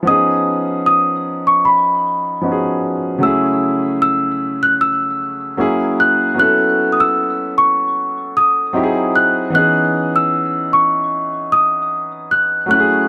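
A clear concert grand piano opens this dreamy, smooth R&B excerpt at 76 BPM with a light sixteenth-note swing, laying down deep-bassed, long-sustaining chords such as C#7, F#m7/C# and A69 up front, while a bell-like, delicate celesta joins at 0.1 seconds with a sweet, boxy high melody touched by tape echo, all set in a light studio reverb.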